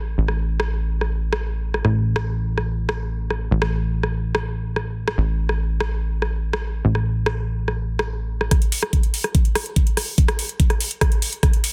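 A dense, heavily limited and nearly dry master carries this hypnotic, driving psychedelic trance excerpt, where a punchy, funky plucky analog bass of sawtooth and square waves with a fast-attack, decaying filter pluck sits up front beside a garage drum kit of metallic hi-hats and rim clicks, its snare softly clipped and its hats and room low-pass filtered, until the bass stops at 8.5 seconds and a knocking electronic kick drum enters for a build-up that runs to 11.7 seconds.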